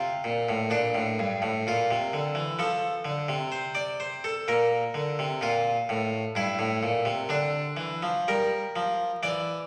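Unhurried and rubato at 64 BPM in 4/4, this introspective, flowing baroque-style suite movement features a solo harpsichord, airy and bright on a single set of strings, set up front in a reverberant recital hall with vinyl crackle, spanning G2 to D5 as it moves from a rootless D minor through B-flat, F and back to B-flat before settling on G minor near 8.3 seconds in this brief 9.7-second cut from a longer piece, tuned slightly high at A4 = 441 Hz.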